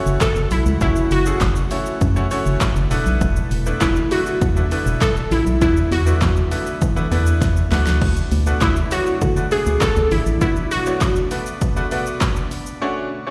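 Heard through a venue's PA in a reverberant recital hall, this confident, energetic dance-pop excerpt at 100 BPM sets a glassy, crystalline wavetable pluck melody with chorus, delay and slapback echo over a brilliant grand piano and a breathy background pad, both pumping with sidechain, while an organ-like FM bass and a punchy, overdriven deep house kit with fat snare, claps, shaker and crash drive the F#m7, E7sus4 and Bm7 changes, with a drum fill at 7.4 seconds.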